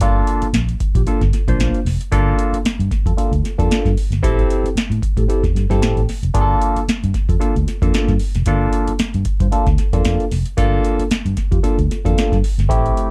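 A booming analog drum machine, a vintage muted fingered electric bass and a barky tine electric piano all start together in this sly, hypnotic funk groove in G dorian. It runs at 114 BPM in 4/4 with a light swing on the sixteenths, tuned slightly flat to A4 = 436 Hz. The drums sit up front, their deep kick, tonal snare and metallic hi-hats roughened by overdrive. The bass is dark, round and foam-muted, with an amped character down low. The up-front electric piano plays bright, lightly overdriven stabs through a combo amp, colored by a phaser, moving from Gm9 to Am7 at 4.2 seconds and back to Gm9 at 6.3 seconds. Light reverb and a warm production frame this short cut from a longer piece, and the bass drops away just before the piano and drums finish.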